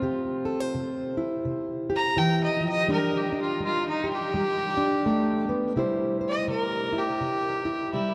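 Bathed in a wet cathedral reverb that makes the space sound vast and echoing, this short cut from a longer acoustic country blues piece moves at a laid-back yet rollicking 83 BPM in 4/4 with a swung feel in C mixolydian, as an up-front fingerpicked plugged-in steel-string acoustic guitar, dark and full-bodied with audible finger squeak, carries the accompaniment from the start over C and G5 chords, and a biting, nasal, earthy bowed fiddle with a smooth top enters at 2.0 seconds to take the melody through to the end at 8.1 seconds.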